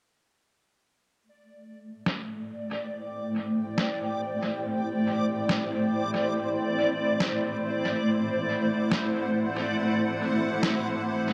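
Emerging at 1.2 s, a bright, reversed, dreamy triangle-wave texture swells and sustains on D5 over an Am7 in A dorian, joined at 1.9 s by an up-front granular cloud pad of blurred, detuned sine chords and, from 2.1 s, a muffled, pitched-down, overdriven electronic snare with low-pass filtering, studio reverb and dub echo, the whole set in a wet spring-reverb room for this deep, spacious ambient dub fragment at 70 BPM in 4/4 with a light 16th-note swing.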